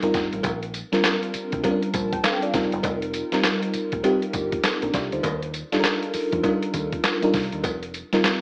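New jack swing R&B at 100 BPM with a slick, confident swing, this short excerpt sets a lush, dreamy FM electric piano with a soft pad layer, shimmering with chorus and tremolo, over a round, punchy fingered electric bass and a gritty, pitched-down sampler-style drum kit of thumpy kick, handclaps, hi-hat, snare and tambourine, while a metallic cowbell joins in the background at 0.4 s as the chords move from Bb69 through F9sus4 to Ebmaj9, all under light reverb with an AM radio character.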